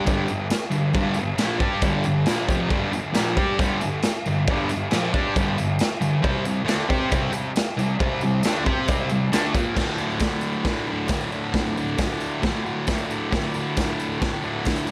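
A straight 4/4 pulse at 136 BPM drives this swaggering, gritty garage rock excerpt in D minor, where a thick, bright, double-tracked fuzz guitar riff ranging from D2 to C5 moves from G5 to C5 at 6.2 seconds and lands on D5 at 9.8 seconds over a raw, punchy, saturated drum kit with dark cymbals and a pumping small-room sound, both up front, while a jingly, close and dry tambourine sits in the background, all framed by light reverb and small room ambience.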